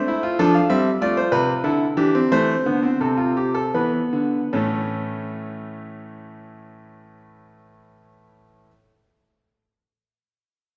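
Contemplative and serious, this passage from a longer classical work is a baroque-style three-part fugue for solo grand piano in 3/4, moving at 72-98 BPM with a straight feel and tuned to A4 = 437 Hz. The concert grand sounds clear and smooth with a vintage character, its deep bass anchoring a range that runs from A2 up to F5, and it sits up front in the sound. Over the first 4.5 seconds the tempo slows as the harmony moves through F, D9sus4, A minor and E5. A new section begins at 4.5 seconds, arriving on an A chord, and the piano plays on until 8.7 seconds. A wet recital hall reverb with a 1.9-second decay surrounds the instrument, giving the counterpoint a spacious, resonant setting.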